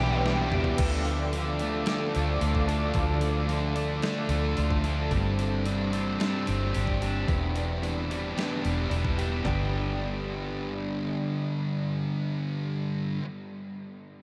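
Hazy and blissful, this shoegaze and dream pop excerpt drifts in a dreamy mix soaked in a huge ambient reverb, where a dark, up-front fuzz guitar riff and a crunchy overdriven guitar riff with reverse reverb sit over a round, foam-muted fingered bass, while a clean, direct-recorded guitar plays chorused, tape-echoed arpeggios in the background, a smooth detuned sawtooth pad holds sustained chords until 5.1 seconds, a bright double-tracked distorted guitar appears only briefly at the start, and a detuned 8-bit drum machine with a thumpy kick opens with a fill at 0.3 seconds and plays until 9.6 seconds.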